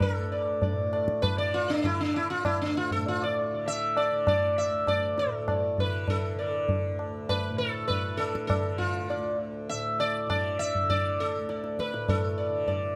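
A 5/4 pulse at 100 BPM that gradually speeds up carries this longing, introspective Hindustani excerpt in raga Shivaranjani on D, where a round, buzzing sitar with shimmering sympathetic strings and tape echo sings the up-front melody between D4 and E5, a bright, softly plucked tanpura drones beneath from D2 to D3, and a high-tuned, ringing tabla sounds close and dry, all captured by detailed close microphones with little reverb.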